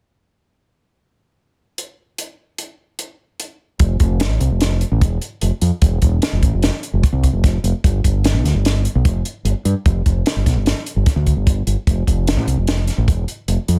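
A growling, overdriven fingered electric bass sits up front in this intricate, bright slice of math rock and midwest emo, its direct-and-amped tone ranging from E1 to G2 once it enters at 3.8 seconds. Before that, a compact cocktail drum kit opens alone at 1.8 seconds with hi-hat, a tight kick and a high-tuned snare. The kit's sound is dark and smooth, with a rolled-off top and the close feel of a small room, and it also sits up front. The piece moves at 149 BPM in an odd 5/4 metre with a straight feel, set in F lydian with tuning at A4 = 441 Hz. The drums and bass carry on together until the cut at 13.8 seconds. The mix is dry with little reverb, and the master is dense and heavily limited.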